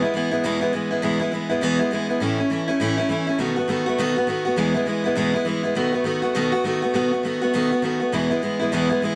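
A bright, up-front picked steel-string acoustic guitar with fresh strings and audible finger squeak plays alone in this rollicking, upbeat rock excerpt at 203 BPM with a 60% swing on the eighths, moving through E, A and B7 chords in E major across 9.2 seconds in a moderate studio reverb.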